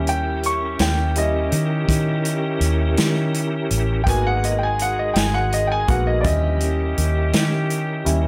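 In a slow 12/8 blues feel, this mournful, soulful excerpt features a clear, woody upright piano soloing over dark, round muted electric bass, a swinging big-band drum kit with hi-hat, punchy kick and snare, smooth tonewheel organ chords through a slow rotary speaker, and a tight vintage horn section holding sustained harmonies, all in a dry room with chords moving from D#7b9 to G#m7 at 4.1 seconds and back.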